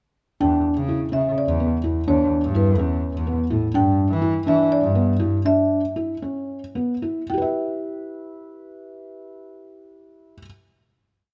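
Contemporary instrumental chamber music in 7/8 and E dorian, urgent and hypnotic, moving at 214-252 BPM in eighths with instruments tuned to A4 = 435 Hz and slowing down from 3.7 to 7.3 seconds before settling on a final E minor chord. A soft, felt-muted upright piano carries a dark, intimate arpeggiated ostinato with audible action noise, while a rich, focused bowed double bass plays a syncopated riff with vibrato until 5.3 seconds. Above them, a woody rosewood marimba with medium mallets states a motif-based melody of call phrases, all captured up close in detail with light reverb.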